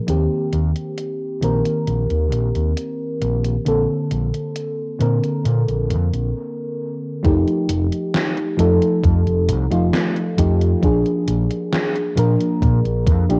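A slow, straight 4/4 vaporwave groove is carried by a gated 80s drum machine, whose hi-hat and gated-reverb snare sound tape-softened and re-recorded in a large room, with a thumpy electronic kick joining at 7.2 seconds after a brief stop that begins at 6.4 seconds. Up front, a dark, chorused FM electric piano with a noise layer and cassette tape echo drifts through lush chords such as Bbmaj9 and F9, while an overdriven, round, punchy fingered electric bass holds the low end. The woozy, faded mood is heightened by the cassette home-recording sound of this fragment cut from a longer piece.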